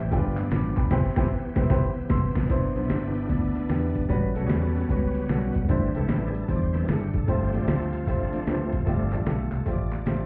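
Hopeful and jubilant, this uptempo gospel cut at 151 BPM in C major swings along with a clear, vintage concert grand piano, a bright, shouting tonewheel organ through slow rotary speaker, overdrive and chorus vibrato that takes a solo from 2.5 seconds, a dark, round, foam-muted fingered electric bass up front, a compressed, pitched-down trip hop sampler-style drum kit with a thumpy kick, and hollow group handclaps in the background, all sounding as if heard muffled through a wall in a club.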